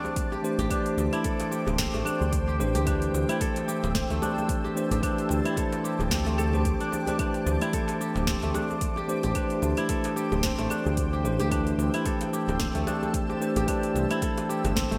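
A bell-like tine electric piano, a kora's ringing arpeggios and a granular cloud pad open this fragment of organic downtempo, set at 111 BPM in 4/4 with a swung sixteenth-note feel and a hypnotic, meditative mood. The electric piano sounds clean and direct, with digital delay and sidechain pumping, while the fingerpicked, crisp kora also carries digital delay, and the detuned, evolving pad hovers higher with chorus, its own reverb and pumping. An afro-pop drum kit of claves, metallic hats, shaker and a sharp snare comes in at once through gated reverb, joined by a deep electronic kick, and a tight, cracking djembe sits in the background with a vintage, band-limited tone. A smooth, mellow synth bass, sustained and pumping, arrives at 0.6 seconds and anchors the low end. The harmony rests on Am7/D before shifting to C at 13.7 seconds, and the whole mix has a bright 1980s-style digital sheen within a lush hall reverb.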